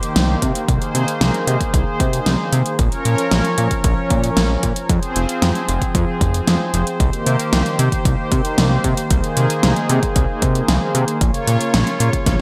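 The recording has a bright digital production in the 1980s style, set in a moderate plate reverb that gives this nostalgic, cinematic synthwave fragment a polished sheen. A brassy, bold analog pad of detuned sawtooth voices holds sustained chords from the very start, its soft attack and filter swell colored by chorus, tremolo and sidechain pumping. Up front, a pop drum kit supplies a fat snare and metallic hi-hats, overdriven and drenched in gated reverb. A thick, saturated sawtooth bass joins at 0.2 seconds, its detuned tone evolving from a fast-attack filter pluck into sustained low notes, and an electronic kick drum follows at 0.4 seconds with a punchy, overdriven thump. Over a straight 4/4 groove, the harmony moves from Cm7 through Abadd9/C, Bbm and Fm, then circles back to Cm7, Abadd9/C and Bbm before the passage is cut off.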